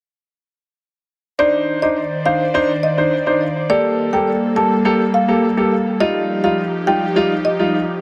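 A clear, intimate grand piano sits up front from 1.4 seconds, its accompaniment carrying audible action noise and a tape echo that trails each chord. This is a hypnotic, bouncy dancehall excerpt in a straight 4/4, moving through Cmadd9, Gmadd9 and Ebadd9 harmonies. A woody marimba struck with medium mallets on padauk bars plays the melody in a high register, also fed through tape echo. From 1.7 seconds an airy, breathy pad holds sustained chords with a slow attack and long release, its bright, detuned, warbling, vintage tone carrying chorus and a noise layer. The echo-heavy mix is bathed in a moderate spring reverb, and the pad lingers until 8.0 seconds, just after the other parts fall away.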